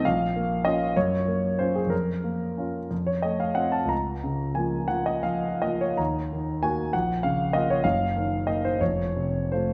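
A concert grand piano opens alone on a B-flat minor chord, setting a stormy, brooding tone for this romantic character piece cut from a longer work. The tempo is slow and elastic, around 53 to 67 beats per minute counted in dotted quarters, with a rubato lilt in 6/8. The harmony moves from B-flat minor through G-flat major seventh and F before settling on a darker stretch in E-flat minor near 6.0 seconds, then returns to F at 8.8 seconds. The piano spans from deep F1 in the bass to B-flat5 and sits up front with an intimate, natural tone, its mechanical action audible beneath the notes. A wet concert hall reverb with a long tail surrounds the instrument, giving its dark chords a spacious, lingering decay through to 9.7 seconds.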